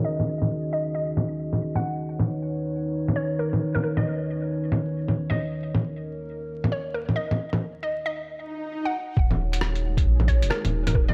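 Soaked in vinyl crackle and low-pass filtering, with a moderate hall-like reverb, this short wistful future garage passage at 135 BPM sways on a swung sixteenth feel as a hollow, bouncy square pluck carries the melody over a dark, detuned analog pad with sidechain pumping, moving from Ebm7 to Badd9/D#. A muffled, tape-warm sampler-style kit of bongos, hi-hat and rim click ticks along up front while a filter sweep runs, and an electronic swell leads into the second section at 9.2 seconds. There, a thumpy, pitched-down kick and a deep, round dub sub bass enter, and a grainy, flickering texture drifts in the background from 9.6 seconds.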